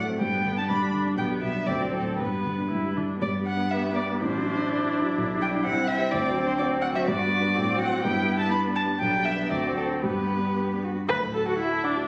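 A quick classical-period movement for piano quartet in G major and 2/4, this short excerpt from a longer piece is cheerful and spirited, moving at 112-127 BPM with a rubato feel. The muted violin carries the melody up front, its con sordino tone dark and veiled, shaped with vibrato and portamento. A dark, mellow concert grand piano also sits up front with deep bass, sharing the accompaniment with the muted viola, whose bowed line is likewise veiled and touched with vibrato. The muted cello plays a second line close yet in the background, shadowy under its mute. All four play throughout, and the harmony circles mostly through G, G/B and D7, with a brief turn to C and F#dim/A before settling on D at 11.1 seconds. The sound is a phone recording in a recital hall with added studio reverb, lush and dull at the top end.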